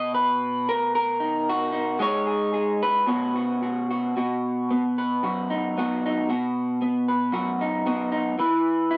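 Warm and nostalgic, this brief folk excerpt in B major at 113 BPM drifts with a rubato feel as a lone electric guitar through a small old amp plays alone from 0.0 to 9.0 s, its picked, slightly broken-up, compressed tone sitting up front with subtle chorus, moving through chords like Bmaj7, Bsus2 and E5 inside a wet studio reverb, all coloured by the warbly pitch drift of worn, old cassette tape.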